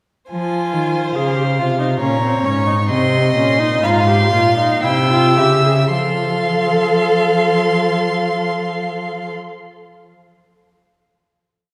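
Up front, a vibrato-rich cello anchors this short, driving and serious baroque-style fugue for string quartet in 3/4 at 52-72 BPM, where a soft-attacked first violin, a rich second violin and a warm viola each carry a bowed, expressive line of imitative counterpoint with portamento, gradually slowing through an F minor exposition before settling on a final F major chord at 5.9 seconds, heard from further back in a reverberant concert hall.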